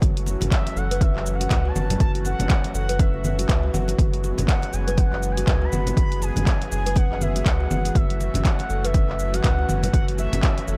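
This afro house excerpt opens at once on a punchy, up-front electronic kick, a deep house kit of cabasa, finger snaps, handclaps and dark hats, and hard-handed congas sitting in the background, all moving at 121 BPM in 4/4 with a 16th-note swing. Beneath them a round sine sub bass holds the low end in F# minor, while a woody, hollow-sounding kalimba spins thumb-plucked arpeggios coloured by 12-bit sampler grit and digital delay. A detuned sawtooth analog pad sustains soft-attack chords with chorus and tremolo, moving from F#m7 to Eadd9/F# and back, and both it and the kalimba breathe with sidechain pumping, as does the bass. At 0.5 s an expressive synth lead enters high in its range, its smooth sawtooth-and-triangle tone carrying vibrato, a moving notch, subtle chorus, sampler grit and delay. The production is dark and close, with little reverb, giving the loop an earthy, spiritual feel.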